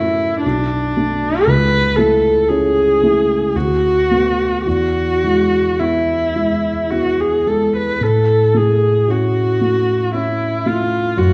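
The pulse moves at a slow 56 BPM in 3/4, with uneven beats and a rubato feel that lets the phrases breathe freely. This lyrical romantic classical duo in A major is a short excerpt cut from a longer piece, lasting about 11.3 seconds. A single bowed viola carries the melody between D4 and B4, its rich, expressive tone shaped by vibrato, soft attacks and gliding portamento. A dark, mellow baby grand piano plays the accompaniment from B1 to E4 with a smooth, vintage character, and both instruments sit up front. The harmony moves from Bm7 through A/C# and Bm7/D to E, arriving on A at 8.0 seconds. A moderate scoring-stage reverb and a dusky, warm production wrap the duo in a gentle glow.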